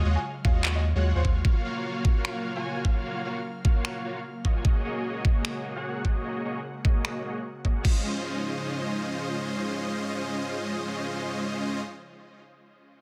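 Lush and bright, this future bass passage at 150 BPM in Db major moves in a half-time, lightly swung feel and is cut from a longer piece. A huge, detuned supersaw riff with vibrato, tape echo and a low-pass filter sweep sits up front. An airy, breathy pad with chorus and phaser hangs in the background, and both pump under sidechain. A deep, saturated sub bass and a dark, worn baby grand piano melody with digital delay appear only in the opening moments, with the bass stopping at 1.4 s. A knocking, tape-warm electronic kick and an overdriven trap kit with crash cymbal, finger snaps and handclaps drive the harmony from Ebm11 through Gbmaj7 and Ab9sus4 until 7.9 s, and the chords then settle on Dbmaj9 within light digital ambience.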